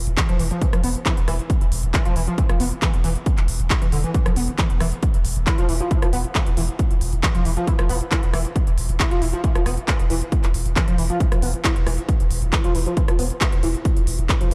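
A deep, saturated sub bass opens this dark, relentless stretch of driving peak-time techno at 136 BPM, filtered and overdriven with sidechain pumping, before a heavy layered electronic kick and a techno kit of handclaps, smooth hi-hats and rim clicks join, their tape-tinged sound re-recorded in a small room. From 0.2 seconds a gritty, screaming synth lead with a guitar-like edge rides between D3 and E4, its sawtooth and square tones thickened with ensemble chorus, vibrato, delay and pumping. The kick sits loudest in the mix, and light reverb surrounds this single section, cut from a longer piece.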